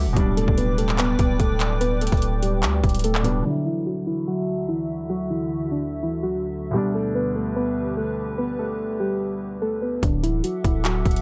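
Dry and close, this triumphant yet dreamy half-time trap excerpt at 146 BPM in D major sets dark, muted felt-like synth keys carrying the melody over an intimate grand piano with audible action noise and a hollow, airy, flute-like pad, while a saturated 808-style bass and a trap kit of hard-clipped kick, metallic hats, handclaps and rim clicks hit up front, drop out by 3.4 seconds for a filter-swept stretch, and return at 10.0 seconds.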